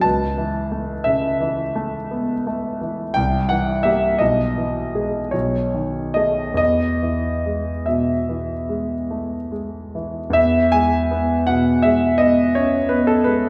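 A classical romantic nocturne for solo piano, this brief fragment of a longer piece carries a tender, nostalgic mood in E major and 9/8 time. The tempo moves freely with rubato, settling around 46-59 BPM counted in dotted quarters. A warm concert grand plays alone throughout, ranging from B1 up to A5, with a worn, natural character and a deep bass, and it sits up front in the balance. The harmony drifts from A/C# through C7 at 3.2 seconds and B13 before resolving to E at 6.6 seconds. A wet recital hall reverb with a 1.7-second decay surrounds the instrument, and the listener seems placed further back in the room, lending the playing an intimate yet spacious glow as the opening section returns at 10.4 seconds.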